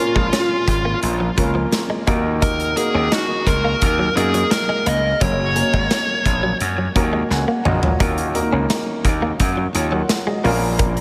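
A dark, overdriven lead guitar carries the melody up front with delay until 6.6 seconds, where a polished baby grand piano takes a fill and the big, punchy rock drum kit follows with its own fill at 7.3 seconds, all in a dramatic, urgent 1980s-style pop passage where a gritty, bright slap bass drives the low end and a clean, compressed electric guitar riff shimmers with analog chorus and delay in the background, the whole mix soaked in dreamy cathedral reverb.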